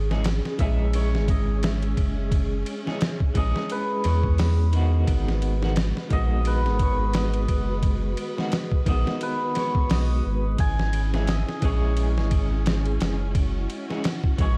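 Trip hop at 87 BPM with a swung 16th-note feel and a brooding, dark mood, cut from a longer piece: a shimmering, ringing hammered dulcimer carries the melody through tape echo over a round sine sub bass and a gritty, pitched-down sampler-style drum kit with a thumpy kick, both up front, while a twangy, slightly broken-up electric guitar through a small old amp adds picked accompaniment with tremolo and tape echo from 0.1 s, and a lush bowed string section holds sustained chords in the background, moving from C#m to G#m7 and back in a dry, vinyl-crackled production.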